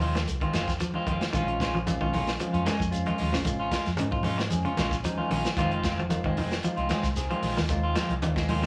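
Driving and intense, this afrobeat excerpt moves at 113 BPM in Bb minor with a lightly swung sixteenth feel, built on a crunchy, gritty breakbeat kit with a tight kick, a round, punchy hollow-body bass, ringing congas and a grainy shekere in the background. A twangy, slightly broken-up electric guitar plays stabs in the background while a second, up-front guitar adds arpeggios through spring reverb from 0.2 seconds. A bright, barky tine electric piano enters at 1.3 seconds to accompany the Fm7 and Bbm7 changes, with a short fill at 4.8 seconds, all set in a moderate studio reverb.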